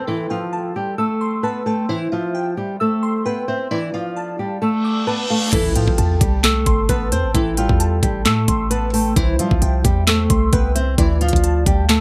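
In a half-time trap feel, a thumb-plucked flamenco guitar carries a dark, melancholic melody up front against glassy, detuned digital keys with chorus, while a downlifter and reverse cymbal sit in the background before an impact at 5.5 seconds brings in a punchy, heavy 808-style bass and an overdriven trap kit with knocking kick, sharp snare, crisp hats, handclaps and crash under light reverb.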